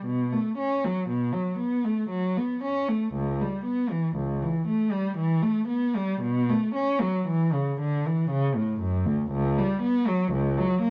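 Classical in style, this brief fragment of a baroque-style suite movement for unaccompanied cello unfolds in a radiant, serene mood at 59 BPM in 3/4, with a free, rubato feel. A single bowed cello plays throughout the 10.9 seconds, ranging from C#2 up to C#4 with a rich, expressive voice. The playing carries vibrato and portamento, and the instrument sits up front while still sounding distant. Light reverb surrounds the cello, and the sound is coloured by worn, warbling old cassette tape with a warbly pitch drift. The tuning rests slightly low at A4 = 439 Hz, and the passage is cut from a longer piece.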